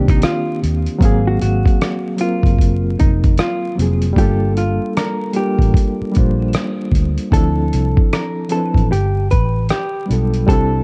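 A reedy electric piano with a fast tremolo carries the chords of this reflective, melancholic lo-fi hip hop excerpt at 76 BPM in G dorian, moving from Cm9 through Gm9 to G9, while a clean hollow-body jazz guitar sings a dark, fingered melody, a round, foam-muted electric bass sits up front, and a compressed, sampler-style drum kit with a thumpy kick, hi-hat and rim click swings underneath, all wrapped in a dark production with vinyl crackle and little reverb.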